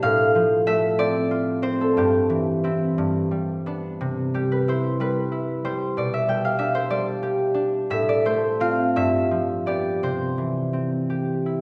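A concert harp plays alone here, mellow and fingerpicked, its ringing strings placed up front and spanning from G2 to G5. This is a dreamy, peaceful classical solo harp piece, heard as a short passage cut from a longer work, flowing in a gentle 6/8 with a free, rubato feel. The harmony drifts through inverted chords such as F/A and C/G before settling on G, then C, and later moves through G/B and G7 to arrive home on C at 10.0 seconds. The acoustic tone of the instrument comes through clearly, while a wet scoring-stage reverb lends the notes a soft, spacious halo. The passage lasts 11.6 seconds and keeps a calm, unhurried character throughout.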